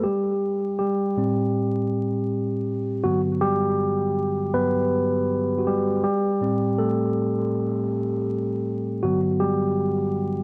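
Vinyl crackle and a small, wet room frame this nostalgic, mellow hip hop fragment at 80 BPM with a lazy 16th-note swing, where a lone tine electric piano, clean and up front and colored by cassette tape, a low-pass filter and tape echo, drifts between Am7 and Gmaj7 from 0.0 to 10.4 seconds, tuned slightly sharp to A4 = 444 Hz.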